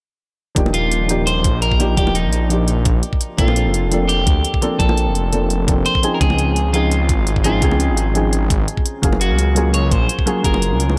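A soft, felt-muted upright piano with tape echo and audible action noise opens this lush liquid drum and bass excerpt at 0.5 s, joined almost at once by a menacing, saturated detuned saw bass with a filter swell, a knocking electronic kick, crisp layered hi-hats and round, low-tuned bongos in the background, while a bright, twangy electric guitar at the edge of break-up carries the melody through spring reverb and delay over swung sixteenths and a progression of major ninth chords.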